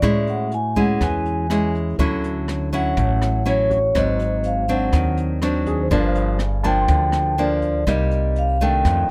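Close, detailed and nearly dry, this short cut from a longer relaxed, sunny bossa nova at 122 BPM puts a mellow, ringing vibraphone played with soft mallets (motor off) on the melody over fingerpicked nylon-string guitar sitting up front. Pizzicato upright bass with woody, thumpy gut strings anchors the low end, while a dark, smooth brush kit adds hi-hat, rim click and a boomy kick. A natural baby grand piano stays in the background until 7.9 seconds as the harmony moves from Amaj7 through Dmaj9 and G#7#11 to Gm7 and Cm7.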